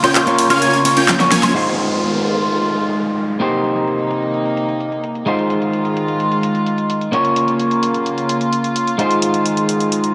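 A bright, twangy electric guitar at the edge of break-up sits up front with a digital delay, playing accompaniment over dark, reedy chamber strings that hold sustained chords through this emotional, powerful festival progressive house excerpt in F minor at 129 BPM. It opens on a drop where huge, phaser-laced supersaw chords and a thick, detuned unison lead arpeggiating high in the background ride an overdriven big-room kit with a massive snare, handclaps, hi-hat, ride and woodblock, capped by a drum fill and a band accent. At 1.5 seconds the supersaws and lead stop, a filter sweep settles over the drums, and an electronic downlifter falls until 5.3 seconds beneath a lush hall reverb, while the chords move through Fm7, Cm7, Fm7, Bbm and back to Fm7.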